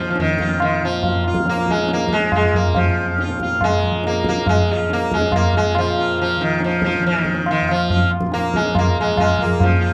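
Hindustani classical music in a longing, meditative mood, this short excerpt cut from a longer piece sets an up-front, plectrum-plucked sitar melody, buzzing and shimmering with sympathetic strings, over a softly plucked tanpura drone and low-tuned, ringing tabla that sounds distant as if in a large room, all captured in a dry, close 1970s-style studio sound.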